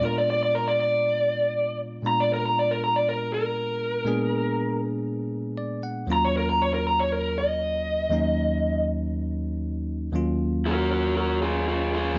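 Brooding and mournful, this short cut from a longer blues piece in Eb minor moves at 119 BPM in a straight 4/4, shifting from Bb7b9 to Ebm9 at 6.1 seconds. A picked, overdriven lead guitar through a small cranked amp solos up front with a warm lo-fi edge, while a bell-like tine electric piano, clean and direct under a phaser, accompanies throughout and slips in a fill between 5.3 and 6.1 seconds. Light digital reverb frames the pair in a mix that tops out below 7.5 kHz.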